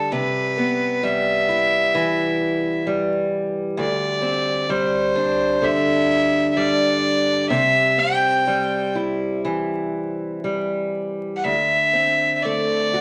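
A moderate studio reverb and a layer of vinyl crackle frame this pastoral, nostalgic Celtic slow air, cut from a longer piece and moving in a rubato 4/4 at around 59-67 BPM. Up front, a single earthy fiddle carries the bowed melody with light vibrato and a clear, close tone. Beside it, a bright, boxy parlour-style steel-string acoustic guitar with fresh strings fingerpicks the accompaniment, finger squeaks audible, through Cmaj7, D7sus4 and C chords.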